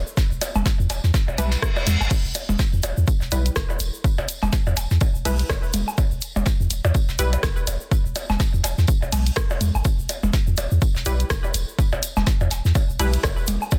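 A punchy, up-front electronic kick and a deep, sine-toned sub bass with a pitch-drop attack and sidechain pumping drive this hypnotic, clinical minimal techno excerpt in E minor at 124 BPM with a 58% sixteenth-note swing, joined by a tape-warm analog drum machine with crash, hi-hat and rim click, layered percussion blips and woodblock, a soft brush kit of hi-hat, snare and tambourine, a grainy egg shaker in the background, a reverse cymbal from 1.3 to 2.1 s, and a muted, detuned dub chord stab with chorus and delay that enters at 1.4 s and returns at 11.1 s, all held on an E minor chord in a dense, heavily limited, nearly dry mix.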